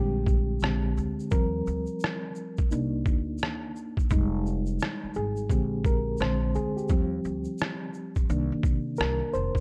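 Reflective and melancholic, this short lo-fi hip hop cut from a longer piece moves at 86 BPM in 4/4 with a lazy 16th-note swing, sitting in C minor. A mellow, reedy electric piano carries the spotlight from the very start, its fast tremolo and cassette-tape haze coloring a chord cycle that runs through Bb13, Eb69, Cm9 and Fm7. Beneath it, a woody pizzicato upright bass with steel strings sits up front, while a gritty, pitched-down sampler-style trip hop kit joins at 0.3 seconds with a thumpy kick and rim click, compressed and carrying vintage 12-bit crunch. A grainy, bright egg shaker enters at the same moment, placed close yet kept low in the mix. Light reverb and a dark, warm production wrap up the whole fragment.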